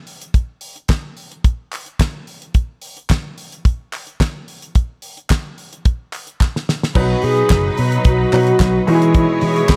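A straight 4/4 disco groove at 109 BPM opens on a dry, up-front 70s drum kit with a fat snare and tight kick, crisp close handclaps join at 0.9 seconds, and a clear concert grand piano slips in with short-sustained accompaniment at 6.9 seconds during a drum fill that starts at 6.4 seconds. The driving, sultry excerpt then blooms at 7.0 seconds over B and then Emaj7, as a mellow, hollow alto flute with a soft attack and vibrato carries the melody, a punchy fingered electric bass anchors the low end, a biting, earthy bowed string section plays a second line, and a very quiet, reedy tonewheel organ holds chords through a fast rotary speaker, all set in a small room.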